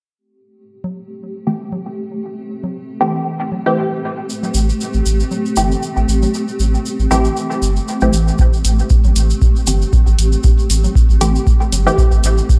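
A muted, detuned dub chord stab, up front with chorus, phaser, dub echo and a filter sweep that runs until 8.4 seconds, punctuates this deep, nocturnal dub techno excerpt at 117 BPM in A minor with a light 16th-note swing, set over a sidechain-pumped granular cloud pad, overdriven congas in the background, a grainy tube shaker and a round analog bass that enters at 4.5 seconds, before an analog electronic kick drum arrives at 8.4 seconds with dark, layered hi-hats, the whole piece sitting in a light digital ambience.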